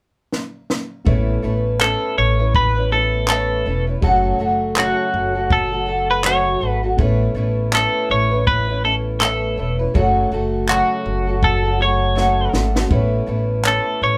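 A bright, twangy twelve-string electric guitar carries the melody from 1.8 seconds in this carefree, easy-going acoustic pop excerpt, its clean, compressed tone sitting up front over a swung groove that moves between Aadd9 and F#m. A compact cocktail kit with a punchy kick, high-tuned snare and handclaps opens with a fill at 0.3 seconds and adds another near 12.2 seconds, while a woody pizzicato upright bass and a shimmering, boxy fingerpicked twelve-string acoustic guitar, complete with finger squeak, fill out the sound. Behind them a soft, felt-muted upright piano murmurs in the background with audible action noise, and the whole band shares a moderate studio room as if playing live together.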